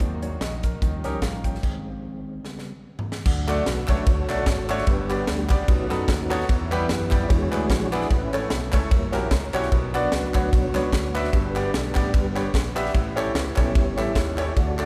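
Uptempo gospel at 149 BPM with a light swing, reverent and hopeful, where a mellow, flute-like tonewheel organ with slow rotary speaker and chorus vibrato takes the lead over a clear, up-front concert grand piano, a punchy fingered electric bass and a crisp, polished fusion drum kit with high-tuned snare, while veiled, muted strings sit in the background until 1.6 s, a stop and drum fill lead into D major at 3.3 s, and crisp group handclaps join at 3.5 s, all bathed in a moderate church reverb.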